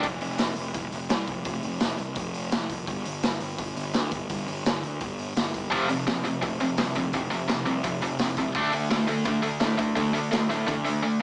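A straight 4/4 punk rock pulse at 169 BPM drives this aggressive, angry cut from a longer track, where a raw garage kit with a boomy kick, medium-tuned snare and hi-hat pumps in a small, gritty room alongside a punchy, fuzz-laden picked electric bass. A bright, double-tracked distorted guitar strikes at 0.0 s and returns with its tight riff at 5.7 s over power chords moving from F5 to G5, back to F5 and down to D5, all heard through light reverb and a small-speaker sound.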